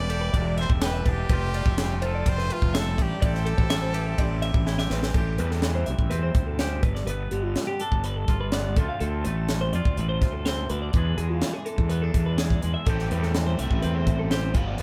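Wistful and intricate, this math rock and midwest emo excerpt opens with a brilliant, close-miked trumpet melody with vibrato that stops at 4.6 seconds, over a bright twelve-string electric guitar's arpeggios, a clean twangy electric guitar's accompaniment, a growly fuzz bass up front and a crisp, polished fusion drum kit with dark cymbals, a high-tuned snare and a punchy kick, which plays a fill just before the second section, before a double-tracked overdriven guitar riff joins in the background at 12.9 seconds, all captured as a band playing live in one room with light reverb.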